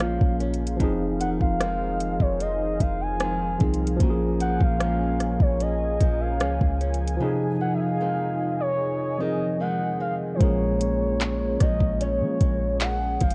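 Dry and warbling like worn cassette tape, this short cut of sensual, longing contemporary R&B sets a gliding, vibrato-laced sine lead with chorus and delay over a lightly overdriven, slightly out-of-tune tine electric piano, fingerpicked flamenco guitar arpeggios with finger squeak, a deep, boomy 808-style bass, a soft-kicked electronic drum kit of handclaps, metallic hi-hat and rim click, and a detuned sawtooth analog pad pumping in the background, with a break from 7.2 to 10.4 seconds.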